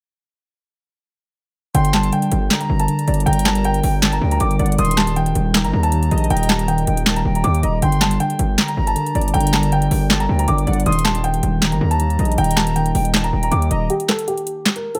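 A melancholic, brooding half-time trap excerpt opens at 1.7 s with a worn, low-passed baby grand piano melody, a reedy flute second line through digital delay, warbling lo-fi synth keys with chorus, a saturated, aggressive 808-style bass and an up-front trap kit of sharp snare, metallic hats and handclaps, joined at 2.6 s by a very quiet, dark ambient pad holding sustained chords over alternating G minor and E-flat harmony, before a break at 13.9 s leaves only the filter-swept piano and the drums in a digital ambience.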